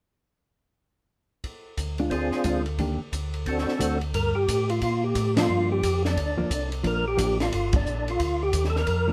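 A live recording of a band playing together in one room, with light reverb, opens this smoky, soulful soul jazz organ trio passage, cut from a longer piece and swinging in 4/4. A compact cocktail drum kit enters at 1.4 seconds, acoustic and dry, with dark cymbals on ride and hi-hat, a high-tuned snare and a punchy kick. A mellow tonewheel organ carries the bass line, round and clean with vibrato, key click and a slow rotary speaker, while a hollow-body electric jazz guitar comps beneath in a compressed, fingered tone. Up front, a percussive tonewheel organ takes the melody, fat and lightly overdriven, with third harmonic percussion, chorus vibrato and its own slow rotary speaker. The harmony moves through Ddim, Ebmaj7 and D7 before arriving on Gm7 as a second section begins, and the band hits accents together at 5.3 and 7.7 seconds.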